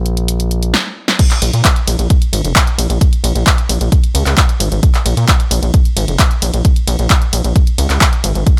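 A dry, close-up sound frames this dark, intense slice of driving peak-time techno at 132 BPM in Bb minor. A gritty, saturated sawtooth synth bass with oscillator sync and a resonant filter pluck pumps from the start, joined by a punchy, tape-warm analog drum machine whose hi-hat, ride and crash also pump, alongside snare and handclaps, with a drum fill arriving at 0.7 seconds. At 1.2 seconds the drop arrives as the up-front electronic kick enters, the loudest part in the mix.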